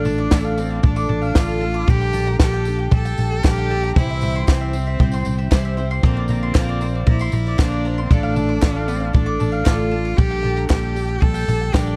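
A clear, bowed cello with vibrato carries a yearning melody from the first moment of this stirring indie folk excerpt, over a shimmering, octave-doubled twelve-string acoustic guitar, round picked mandolin arpeggios, an up-front fingered electric bass and a very quiet, jingly tambourine, while a compact cocktail drum kit with a punchy kick and high-tuned snare joins at 0.1 seconds and crisp group handclaps follow at 0.3 seconds, captured in a dry, close 1970s-style studio sound.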